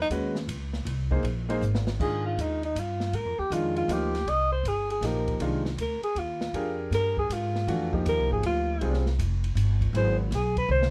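A woody, pizzicato upright bass opens this spiritual, cool excerpt of modal jazz in F dorian, joined almost at once by a concert grand piano with audible action noise and a small-room jazz kit of dark cymbals and boomy kick, swinging in 3/4 at 159 BPM. After a drum fill ending at 2.0 seconds, a breathy alto saxophone takes an up-front solo with scooped notes, light vibrato and a whispered, intimate tone over Fm11 harmony that shifts to Ab7alt near the end. The close, detailed recording carries little reverb, and a final drum fill arrives at 10.7 seconds.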